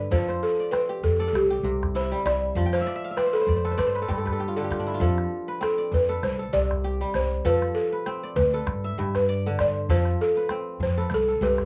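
West African traditional string and xylophone music in F lydian, this flowing, hypnotic passage, cut from a longer piece, moves at 98 BPM in 4/4 with a gentle swing on the sixteenths. An up-front balafon, buzzing and woody under soft rubber mallets, carries the melody over bright, ringing fingerpicked kora arpeggios, a growly pizzicato upright bass, and a small, close calabash. The kora adds a fill from 2.6 to 5.0 seconds, and from 5.0 seconds the balafon takes a solo, with the balafon and kora carrying a cassette-tape colour within a lightly reverberant home recording.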